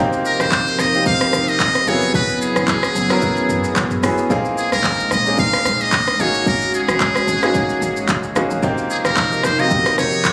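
A buzzy, metal-muted trumpet with light vibrato and tape echo carries the up-front melody from 0.3 seconds in this soulful, hypnotic amapiano excerpt at 111 BPM, set over a polished grand piano, an airy, breathy pad with chorus and sidechain pumping, a dark, round log drum bass sitting in the background, and an electronic afro-pop kit of deep kick, smooth hats, handclaps, rim click, shaker and toms, all moving through F9sus4, Gb9sus4, Bb9sus4 and Ab9sus4 chords and captured on a phone in the room with club reverb.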